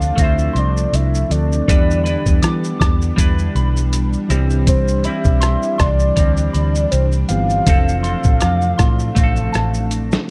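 A soft, octave-layered synth lead carries the melody of this sunny, dreamy indie and bedroom pop piece, its round, warbling vintage tone shaded with phaser, subtle chorus, slapback echo and vibrato. Underneath, a muffled, pitched-down lo-fi drum kit with a thumpy kick, medium-tuned snare, rim click, shaker and hi-hat sits up front at a relaxed 80 BPM in 4/4 with a light sixteenth-note swing, alongside a dark, foam-muted fingered bass that is amped and punchy. A clean, picked semi-hollow electric guitar adds analog chorus and a warbly pitch drift. Mellow electric-piano-like synth keys accompany in the background while a vintage string machine of violas holds sustained chords through Dm7, Em7, Cmaj7 and Fmaj7 in F lydian. A pure FM synth bell enters at 0.5 seconds as a gentle second line, and a drum fill closes the passage at 9.9 seconds, all captured in a dry, close 1970s-style studio sound and cut from a longer piece.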